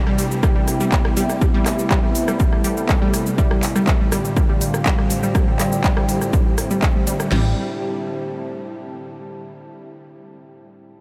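Melodic techno at 122 BPM in A minor, this short excerpt from a longer piece feels hypnotic and dark, steeped in a dreamy haze of huge ambient reverb. A morphing, vintage-tinged wavetable pad holds sustained chords through phaser and sidechain pumping, moving from Cmaj7 to G7sus4/A. Beneath it, a very quiet warbling, lo-fi pad with chorus adds a nostalgic texture and is the only part that carries on to 9.2 s. A lush, detuned unison pluck plays bright arpeggios on G3 through phaser, tape echo and pumping, with a filter sweep running across the opening section. Two layered electronic drum kits, tape-warm and re-recorded in a small room, pair a punchy kick, cracking snare and crash up front with smooth hats, handclaps, rim click and shaker. At 7.3 s a funky, wave-folded analog bass lands a brief plucky A1 over Am7 as the drums and the other synths drop away, leaving the warbly tape-like pad to ring out.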